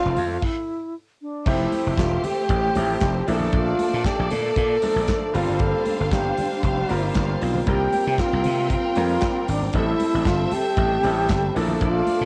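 An airy, expressive alto flute melody opens this glamorous, joyful disco excerpt over a lush, bowed string section and a clear grand piano with audible action noise, joined at once by a growly, overdriven slap bass, a soul drum kit with a tight kick, handclaps and crash cymbal, and very quiet ringing congas, with a brief stop from 0.4 to 1.5 s before the groove moves through chords such as Fmaj9, Gm11 and C7sus4, while the flute, strings, piano and drums carry a cassette-tape haze in a lightly reverberant home recording.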